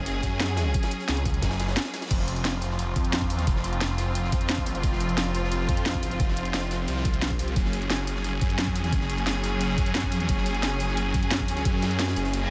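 Dark technical drum and bass at 176 BPM in F phrygian, tense throughout, with a thick, swirling detuned saw bass, phased and overdriven, pumping under lush, distant bowed strings holding sustained chords, while a knocking overdriven kick, a cracking snare with bright hats, crash and shaker, and a very quiet, gritty breakbeat kit with a rolled-off top fill the drums before a reverse cymbal sweeps in at 12.4 seconds.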